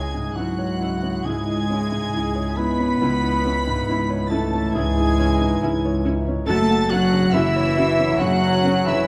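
Moving and uplifting, this short cinematic passage unfolds at a rubato 69 BPM in 4/4, cut from a longer piece and resting on C# minor before shifting to F# minor at 6.5 seconds. A symphonic violin section carries the melody high above, played sul tasto with a soft attack and a pure, floating tone that sits close to the listener. Beneath it, a chamber violin section with vibrato and a concert flute with a hollow, airy tone trace second lines, joined by a clear clarinet and a dark cor anglais with light vibrato, both heard in the background. A grand piano with audible action noise and a very quiet, woody viola section, which stops at 8.7 seconds, supply accompaniment. A distant French horn section holds sustained chords, while distant cello and double bass sections anchor the bass with a soft, floating sound. A moderate scoring stage reverb and a dark, warm production give the whole passage a lush, roomy depth.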